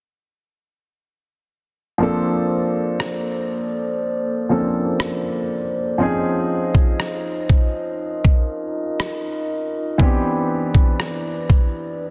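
Dense and heavily limited with light small-room reverb, this smooth, tender contemporary R&B excerpt at 60 BPM in Bb major pairs a polished, up-front grand piano with the ethereal, glassy sustained chords of a slow-attack glass harmonica from 2.0 seconds, moving through Bbmaj9, Dbmaj9 and Cmaj9, while a gritty, compressed sampler-style soul drum kit with a thumpy kick, rim click and soft clipping on the snare enters at 3.0 seconds.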